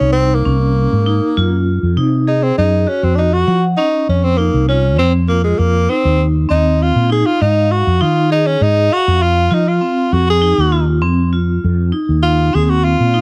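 Driving and intricate, this progressive instrumental band piece moves in an uneven 5/4 with a straight feel, taken from a longer work. A clear tenor saxophone carries the melody as a jazz-style solo across the whole 13.2 seconds, sitting up front with vibrato and scooped notes. Alongside it, a vibraphone struck with hard mallets spins ringing, metallic arpeggios, its fast motor vibrato and band-limited tone giving it a vintage color. The mellow fretless electric bass is dark, round and punchy, amped and up front, with an ensemble chorus thickening its sound. The harmony shifts from Ebm to Fm7 at 5.0 seconds, all set in a small room reverb that keeps this close, dry 1970s-style studio recording intimate.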